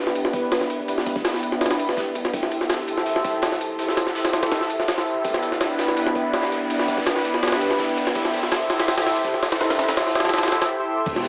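A thick, detuned pad opens this dark, raw slice of jungle drum and bass, holding lush sustained chords that alternate between Em7 and Am7, its chorus and cassette-tape warble giving it a vintage, full-bodied presence up front. Beneath it sits a deep, very quiet sine bass in the 808 mould, with long, mellow notes that decay. From 0.1 s a compressed, pitched-up sampler-style kit drives the track with a thumpy kick, a high-tuned snare, hi-hats, ride and crash, thinned by high-pass filtering and coloured with tape. A second, very quiet breakbeat kit of hi-hat and medium-tuned snare adds saturated acoustic crunch with a rolled-off top. An electronic riser builds in the background from 3.0 s to 10.7 s, leading into a brief break just before the end. The recording has a lo-fi home-cassette character, with vinyl crackle, small-speaker sound and a wet spring reverb.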